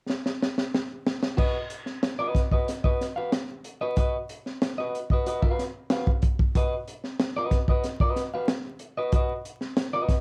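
Cool and funky, this short instrumental funk fragment is cut from a longer piece and moves in a straight 4/4 feel. A crunchy breakbeat drum kit opens it with a fill, its punchy kick, high-tuned snare, hi-hat and dark crash cymbal sounding saturated and gritty, with a rolled-off top that keeps the kit smooth and up front. At 1.4 seconds an electric guitar enters as accompaniment, picked and compressed, slightly broken-up and sitting at the edge of distortion, playing a B/F# chord in its middle register. The guitar carries on until about 10.1 seconds, while the drums hold the groove through to the close at 10.2 seconds. A moderate club reverb surrounds the parts, and the dark, warm production is dusted with vinyl crackle.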